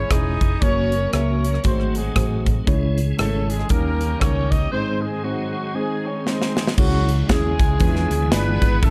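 Uptempo gospel with a soulful, fervent mood and a swung feel, heard in a short passage cut from a longer piece. A loose horn section carries the melody with light vibrato and octave doubling, its smooth top giving the line a jazz-style polish. Beneath it, a tonewheel organ holds sustained chords in the background, piping and lightly overdriven with key click, chorus vibrato and a slow rotary speaker, while a mellow tine electric piano plays clean accompaniment through its built-in speakers. A round, amped fingered electric bass anchors the low end, and an airy, up-front acoustic drum kit with a punchy kick, medium-tuned snare, rim clicks, hi-hat and crash drives the groove. The chords move through minor and dominant colours before a break at 4.7 seconds, capped by a drum fill at 6.3 seconds that leads into a new section at 6.8 seconds. The whole sits in a dark, warm production with moderate scoring-stage reverb.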